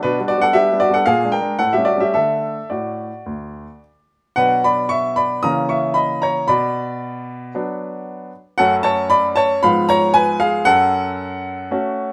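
A clear, polished baby grand piano plays alone and up front in this graceful, cheerful classical-period sonatina excerpt, moving at 114 BPM in 4/4 with a rubato feel and spanning D2 to D#6. The music opens in D major, passing through G/B, Bb7 and A7 to settle on D, then turns to B minor at 4.4 s, with diminished chords colouring a move to F#m by 8.6 s. A moderate large-studio reverb gives the instrument a sense of space, and the tuning sits at A4 = 442 Hz.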